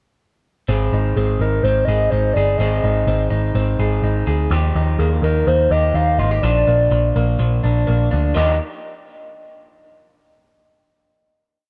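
Jangly indie pop at 125 BPM in 4/4 with a straight feel, this short, complete piece in Eb major carries a youthful, nostalgic mood under light reverb. An electric guitar through a small old amp plays fingerpicked arpeggio rolls from 0.7 seconds, its tone slightly broken-up and lo-fi, bathed in spring reverb and sitting a little back in the mix. A vintage muted picked electric bass enters at the same moment, foam-muted, round and up front, driving the music with eighth notes. From 1.2 seconds a hollow, woody synth lead with a clarinet-like character sings motif-based song phrases with vibrato, its soft, full-bodied voice colored by chorus, phaser and digital delay. The pre-chorus moves from Ab through Ebadd9 to Bb before everything settles on a final Ebadd9 chord at 8.4 seconds.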